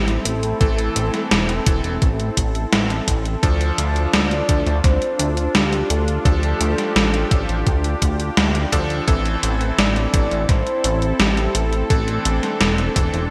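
Bright, 1980s-style digital production with light reverb frames this nocturnal, cinematic synthwave excerpt, where an up-front gated drum machine of hi-hat and gated-reverb snare enters at 0.1 seconds and a thumpy electronic kick at 0.6 seconds, alongside a glossy, chorused pulse-wave synth bass, a brassy, warbling analog pad with sidechain pumping, cutting, clangy electric grand piano stabs through digital delay, and a round, octave-layered triangle-and-sine lead melody colored by chorus, phaser and delay, all over chords moving from Am to Dm and back to Am.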